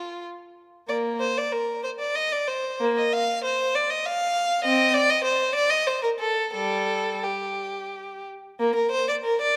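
In a lilting 3/4 with a free, rubato pulse that drifts between 82 and 101 BPM, this brief excerpt from a longer classical work moves like a baroque-style suite movement for unaccompanied violin. The mood is dance-like and radiant. A single bowed violin carries everything from 0.0 to 9.6 seconds, ranging from G3 up to F5 with a rich, focused tone and expressive vibrato. The instrument sits up front, close and present. Around it, a moderate concert hall reverb of 1.8 seconds gives the line a sense of space and bloom.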